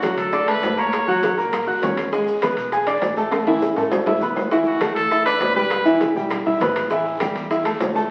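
Salsa at a brisk 201 BPM in 4/4, this short, sunny and festive cut from a longer piece sets a clear, up-front grand piano against a bright, punchy trumpet that carries the melody with light vibrato in two brief phrases, the second arriving at 4.5 seconds after a drum fill. Behind them sit tight, high-tuned bongos, ringing metal-shell timbales and a raspy guiro, with very quiet low-tuned congas, woody claves and grainy maracas, while a dark, thumpy pizzicato upright bass on gut strings enters at 0.2 seconds. The chords move from D6 through F#7, E7 and Asus2 to Dadd9, Em and A5, all bathed in a wet large-studio reverb and the vinyl crackle and lossy artefacts of a very old 78 rpm record.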